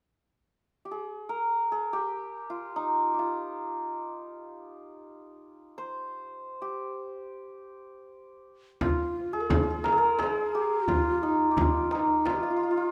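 A moderate recital-hall reverb surrounds this hypnotic, melancholic excerpt of Persian modal ensemble music in free time, set in dastgah shur on G. The shimmering, hammered santur sits up front and carries the melody alone from 0.9 seconds. At 8.8 seconds a breathy, hollow, close-miked ney adds a second line with vibrato, joined by a deep frame drum and a tight, distant tombak played with hard hands.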